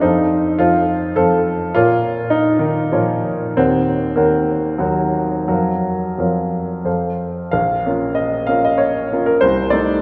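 Heard from further back in a concert hall with a wet, lingering reverb and a softened top end, this stormy, bittersweet excerpt of a romantic character piece for solo piano in Bb minor moves in 3/4 with flexible rubato between 83 and 108 BPM, the clear, present grand piano spanning Bb1 to Gb5 as its harmonies pass from F7 through Bbm and Ebm7 before a new section begins at 7.5 seconds and closes on Adim/C.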